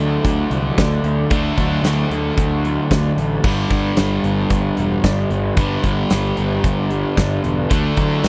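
A straight 4/4 pulse drives this sunny, confident classic rock cut, taken from a longer piece, with the big acoustic drum kit arriving at 0.2 s to pound out punchy kick, medium-tuned snare, hi-hat, tambourine and bright crash cymbals from up front. A bright, overdriven stack guitar sits forward in the mix while a rougher, warm garage guitar plays its own picked riff in the same low-to-middle register, underpinned by a fuzzed, punchy picked electric bass. The changes move from D to G and back to D at 7.7 s, all captured in a dry, close 1970s-style studio sound with a small room reverb.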